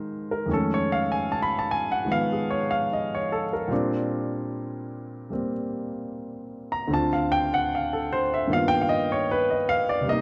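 Set in a moderate, large-studio reverb, this brief cut from a longer solo jazz piece features a warm, up-front grand piano playing alone for its full 10.2 seconds at 75 BPM in 4/4, with a swinging, rubato feel and a smoky mood as it moves through F7alt, Bb69, Dm7 and G7alt.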